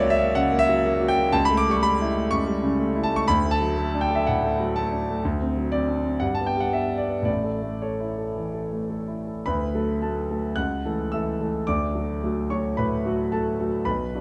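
A romantic classical character piece for solo piano, passionate and warm in mood, moves with a supple rubato feel in four, its harmony passing through seventh chords before settling onto D and then moving by way of G and A. The grand piano sounds polished, present and up front, ranging from deep bass to a high treble, set in a moderate scoring-stage reverb with a dark overall production. A new section begins at 9.5 seconds and returns to D before this fragment of a longer piece breaks off at 14.2 seconds.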